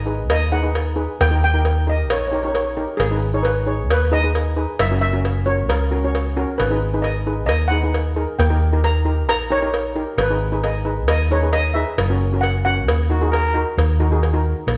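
Dramatic and tense, this calypso excerpt sets a shimmering double-seconds steel pan melody, struck with medium rubber sticks and heard in a boxy small room, over a second metallic steel pan accompanying in a minor-key progression. A dark, round, up-front hollow-body electric bass and a close, dry acoustic cowbell carry the groove, all played live together in a stone room with a lingering reverb. Near the end, at 13.1 seconds, a raspy, growling trumpet slips in briefly from a distance with a gritty jazz-style line.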